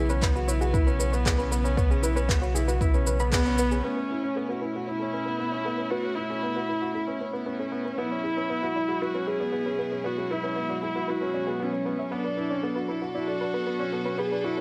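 The piano's intimate riff, with audible action noise and a long, delayed sustain, anchors this cinematic, melancholic piano and strings electronica cut at 116 BPM, over an earthy chamber string section holding sustained chords and a soft pluck arpeggio in the background that pumps with the sidechain and carries chorus, delay and a filter sweep from 3.8 s. A round analog bass, also pumping, joins a deep layered electronic kick and tape-warm shaker and handclaps only for the opening, all dropping out by 3.8 s after a band accent at 3.3 s. That accent also brings in a dark, woody solo viola up front, bowed with vibrato and portamento and touched with delay, carrying the melody through a lush hall reverb as the chords move from C#m7/B to Bm7.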